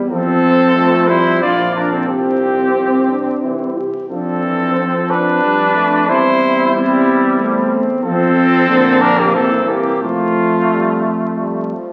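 Triumphant and noble, this brief excerpt from a longer classical brass quintet piece moves in a rubato 3/4 at 90 BPM in F major, with two mellow trumpets up front carrying the melody and a second line with vibrato, the second sounding distant and roomy, over a warm, soft-attacked French horn and a bright trombone with vibrato in the background and a mellow tuba bass, all heard through a wet recital hall reverb on a very old 78 rpm record with vinyl crackle.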